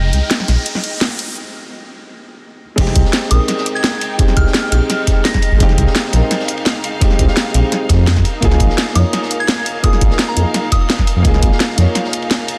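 A lush, dreamy liquid drum and bass excerpt opens on a dark, mellow grand piano with delay, distant bowed strings pumping under sidechain, a rumbling detuned saw bass and an electronic riser, with a cracking snare and bright hats up front from 0.1 s; at 2.8 s the drop brings a knocking kick and a gritty, saturated breakbeat kit tucked in the background, and from 3.3 s a soft, pure FM bell melody with chorus floats above, all in a dense, heavily limited modern master.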